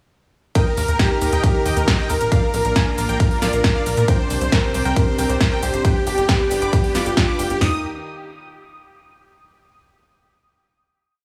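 Uplifting trance at 136 BPM in Eb major, this short, whole piece feels soaring and uplifting, running as a single drop from 0.6 to 7.6 seconds before settling on a final Eb chord. A huge, dense supersaw carries the lead, a repeating sixteenth-note riff over a pedal note in thirds and sixths, thick with detuned unison, vibrato, sidechain pumping and dub echo, while a very quiet, bright supersaw stab doubles it in unison. Beneath it, a dark, boxy concert grand piano repeats its own riff with dub echo, and a silky analog string pad holds sustained chords through ensemble chorus and pumping. The tight sequencer bass enters at 0.8 seconds with a driving, galloping sixteenth-note line, wave-folded and plucky, with sidechain pumping. Up front, a punchy, layered big-room kit lays down a four-on-the-floor kick with snare, toms and metallic hats, joined by a second kit of shaker, ride and programmed backbeat, all under light studio reverb as the chords move from Eb through Bb, Csus2 and G.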